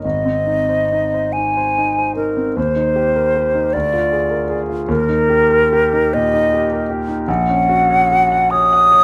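A hollow, pure concert flute carries the lyrical melody with vibrato and tongued notes, sitting close and up front in this short romantic classical excerpt for flute and grand piano. Beneath it, the concert grand plays an intimate, polished accompaniment with deep bass, long sustain and audible action noise, moving through chords from Ab to Eb and on to Gb/Bb by 7.3 seconds. The warm mood unfolds slowly in 6/8 at 44-54 BPM (dotted quarters) with a flexible rubato feel, tuned to A4 = 438 Hz, and captured with close, detailed microphones and light reverb.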